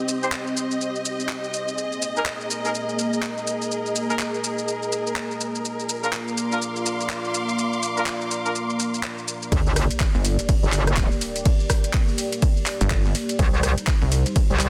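A swung sixteenth-note groove in four drives this gritty, bouncy bass house cut, with a garage drum kit of bright hi-hats, handclaps, ride cymbal, rim clicks and shaker running throughout and a softly clipped snare. The opening builds on a deep, moody analog pad of detuned sawtooth and triangle tones with a sub octave and chorus, while a lush, bowed string section with vibrato and portamento sits up front and a clear, punchy vintage horn section fires tight stabs through a low-pass filter and delay in the background, all three pumping against the sidechain. The chords move from Cm through Absus2 to Bb. At 9.5 seconds the drop lands with a very quiet sub drop and a punchy, layered electronic kick placed up front, as the strings fall away and a metallic, aggressive FM wobble bass with chorus and saturation takes over the low end. From 10.1 seconds a heavy, mellow pluck wobble bass with overdrive joins it, pulsing over Gm and back to Cm. 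Light digital ambience and a dense, heavily limited modern master keep the sound tight and forceful.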